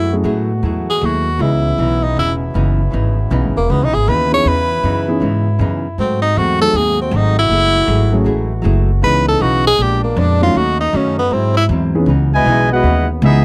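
A swung 4/4 pulse at 157 BPM drives this brassy, dramatic big band passage in C# minor, cut from a longer piece. A bright tenor saxophone solos up front with light vibrato until 11.6 seconds. Beneath it sit a woody, pizzicato upright bass, an intimate baby grand piano with audible action noise, a clean, picked hollow-body archtop guitar in the background, and a soft-attack trombone section holding sustained chords. The harmony moves through minor ninth chords and altered dominants before settling on C#m9 at 12.1 seconds. At 12.3 seconds a tight trumpet section takes over the melody while a second trombone section adds a background line, both with light vibrato. The sound is dry and close, in the manner of a 1970s studio session.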